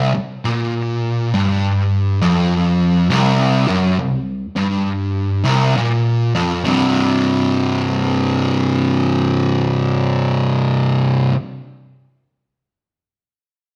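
Through a rough rehearsal-room recording steeped in warm saturation and a stony room reverb, this hypnotic, sludgy metal fragment cut from a longer piece sways at 68 BPM with a swung eighth-note feel. A single double-tracked, compressed fuzz guitar sits up front for the full 11.3 seconds, grinding out a distorted, picked C5 chord low in its register and shifting into a new section at 6.7 seconds.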